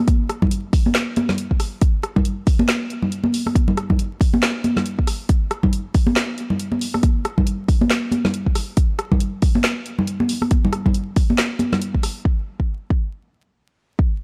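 Dark and heavy, this half-time dubstep drop with a swung sixteenth feel is cut from a longer piece and built entirely from rhythm: a deep, layered electronic kick sits up front from the start and carries on to 14.1 seconds, joined by a produced drum kit of handclaps, rim clicks, a woody snare and dark, filtered hats. Bright congas played with hard hands sit in a small acoustic room and trail off into dub echo, while the whole mix has a dry, gritty hardware character dusted with vinyl crackle. The kit and congas drop away around 12 seconds, leaving the kick alone to close out the short final section.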